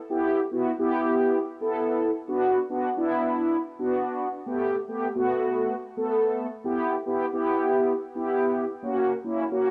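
A mellow synth brass carries this short pop fragment alone, sounding from 0.1 seconds to the cut at 9.7 seconds, with a brassy, warm, round sawtooth tone that is detuned and dark, colored by ring modulation. Its fast attack and sustained notes, shaped by a filter sweep, give the driving, energetic mood a firm push despite the mellow character. Chorus, cassette tape coloring and an analog delay thicken the part, and it sits up front in a small booth with a short, moderate ambience, like a home recording on cassette. The harmony moves through Em, Bm, Gadd9 and back to Em before landing on F#, where the fragment is cut from a longer piece.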